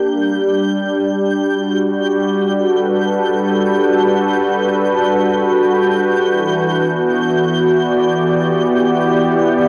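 Luminous and peaceful, this ambient excerpt in free time centres on a smooth, warbling vintage analog pad sitting up front with lush chorus, holding sustained chords from Gmaj7 to Em7 at 6.3 seconds, while a faint twinkling granular texture with its own reverb adds octave-up shimmer high above, all bathed in a lush hall and carrying the gentle character of a home cassette recording.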